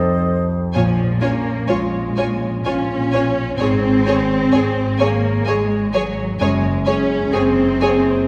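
A present, polished grand piano opens this hopeful, tender cinematic fragment in a rubato 3/4 at 64 BPM, accompanied briefly by an airy, mellow flute that sounds only until 0.8 s, before lush bowed strings enter at 0.7 s: a distant, rich violin section carries the melody over a second violin line, a very quiet viola section adds soft-attack portamento, an up-front cello section offers a smooth top, and a woody double bass section anchors the low end, the whole heard within the wet reverb of a church or concert hall.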